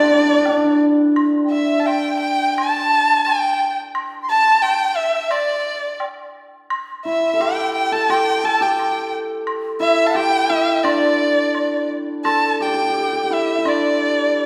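A rich, focused erhu carries the melody with vibrato and portamento up front in this pastoral, festive Chinese traditional chamber excerpt at 86 BPM in a loose, rubato 2/4. It is accompanied by a very quiet, airy, reedy large dizi that drops out at 11.9 s, a shimmering, ringing hammered dulcimer that pauses from 4.4 to 7.1 s, and a small-room woodblock, all heard from further back in a wet recital hall.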